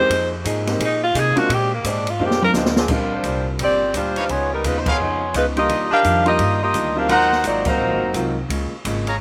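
Big band swing in B-flat major, energetic and propelled by a brisk 171 BPM swing feel, this excerpt from a longer piece opens with a clear, distant tenor saxophone taking a short solo with vibrato and scooped notes until 2.5 s, closed by a drum fill. Behind it, a baby grand piano with long sustain and a dark, clean hollow-body archtop guitar sitting in the background supply the chords. A woody, growly pizzicato upright bass and an open acoustic kit with dark cymbals and a boomy kick keep the groove moving. At 2.8 s a mellow, tight saxophone section steps up front with the melody, and from 4.2 s a present trumpet section adds stabs, with the full band hitting accents along the way. The harmony runs through rich colours like Fm11, Bb9, Ebmaj9 and Ab13. The sound is dry and outdoor with little reverb, though a slapback echo touches the horns, piano and guitar.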